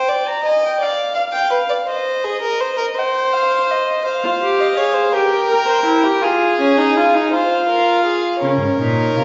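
A rich viola with light vibrato and gut-string tone stands up front from 4.2 s beneath a dark, nasal period-style violin melody and an airy-bowed, close second violin, with a reedy cello bass arriving at 8.4 s, in this serious, driving baroque-style fugue fragment for string quartet in F minor at 55 BPM in 6/8, set in a reverberant recital hall.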